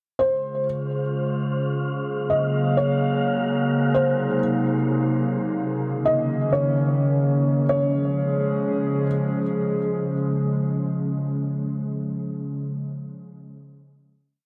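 Bathed in a huge, wet ambient reverb, this short atmospheric cloud-rap piece in Db major floats in free time with a blissful mood, its harmony drifting from Dbmaj7 through Gbmaj9, Ab9 and Bbm7 before settling on a final Db chord at 7.7 seconds. A warbly, nostalgic tape-like pad with chorus sits up front, holding mellow sustained chords throughout, while a felt-muted upright piano with delay repeats a sparse, intimate looping melody like a sample, its boxy tone and audible action noise lending a dark softness until it stops at 9.1 seconds. A breathy, wind-like tuned noise layer adds airy texture early on, dropping away at 5.8 seconds.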